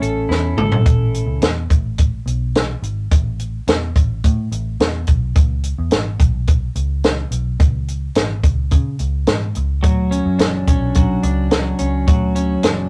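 A cocktail drum kit with a punchy kick and high-tuned snare drives this nostalgic, youthful jangly indie pop fragment in A major at 107 BPM, opening with a fill at 0.3 seconds, while a dark, foam-muted picked bass holds the low end throughout and a bright, twangy twelve-string electric guitar plays slapback-echoed arpeggios at the start and again from 9.8 seconds, all in a rough rehearsal-room sound with light reverb.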